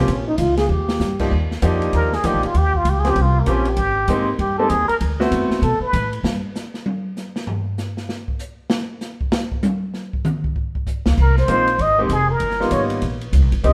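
Caught live in a stone room with moderate reverb, this sophisticated small-group swing and bop cut in Eb major moves at 195 BPM, opening with a brief breathy, distant trombone solo over brilliant upright piano, woody pizzicato upright bass and a dark, smooth jazz drum kit, before a plunger-muted trumpet with wah-wah, vibrato and scooped notes takes the melody at 2.0 s, giving way to a drum solo at 6.2 s until the bass returns at 11.1 s, the trumpet at 11.2 s and the piano just after.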